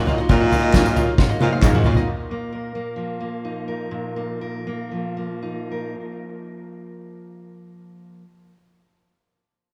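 Indie folk with a hopeful, building feel, this short excerpt opens on a busy acoustic bed: a plunky open-back banjo carries a barely audible melody, a twangy bluegrass banjo picks arpeggios in the background, a boxy archtop guitar with dub echo picks alongside a very quiet, woody upright piano, and a reedy pedal harmonium breathes sustained chords underneath. A mellow, subtoned baritone saxophone with vibrato plays the bass line up front, while a roomy soft-mallet drum kit with a punchy kick drives the beat, joined by jingly tambourine with dub echo and hollow, faint group handclaps from 0.7 seconds, before a drum fill at 1.2 seconds. At 2.1 seconds the music slows and a fingerpicked steel-string dreadnought guitar steps forward alone, its notes trailing into dub echo in an echo-heavy, lightly reverberant mix.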